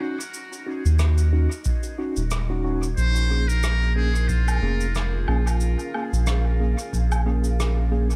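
A swung four-four groove sets the pace in this spacious, deep ambient dub fragment, cut from a longer piece. Distant, roomy cabasa, rim click and woodblock are touched with dub echo, and a tape-warm analog kick joins in the background at 1.7 seconds. The up-front sub bass is soft and round, with a fast attack and a touch of tube saturation. Mellow tine electric piano stabs sound clean through built-in speakers and trail dub echo, while a dark, warbling vintage pad fades in beneath them with chorus and its own reverb, moving from Ebm7 to Bbm7. From 3.0 to 5.3 seconds a buzzy, brilliant trumpet with a metal mute plays a thin, classical-style solo line with light vibrato, set back in the small room and echoed in dub fashion.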